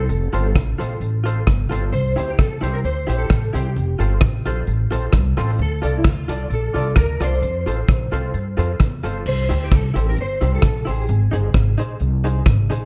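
A woody, growly pizzicato upright bass sits up front in this bouncy, upbeat ska excerpt at 131 BPM in C mixolydian, alongside a vintage drum kit with a tight kick, dark cymbals, hi-hat and rim clicks, its top rolled off. A clean, fingered electric guitar carries the melody through ensemble chorus and slapback echo, while a slightly broken-up, lo-fi second guitar through a small old amp adds compressed, picked accompaniment with tremolo. A percussive tonewheel organ with key click and slow rotary speaker stabs in the background until 9.2 s, over chords moving from F and C through Dm to a closing Ab, in a warm studio ambience.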